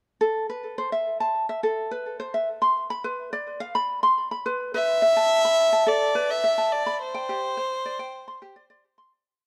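A straight 4/4 pulse at 106 BPM carries this delicate, wistful folktronica piece in A minor, tuned slightly sharp to A4 = 441 Hz. From 0.2 s a fingerpicked acoustic ukulele sits up front with a light arpeggiated sequence, a 10-step loop that drifts against the bar, its notes trailed by digital delay. The harmony moves from Amadd9 through a chordless stretch to Esus4 and then Gsus4. At 4.7 s a single bowed violin enters, also up front, with a motif-based melody in song-like phrases; its reedy, nasal gut-string tone and gentle vibrato lend it a period character. A wet echo-chamber reverb surrounds the sound, and the piece fades out from 6.3 s to its close.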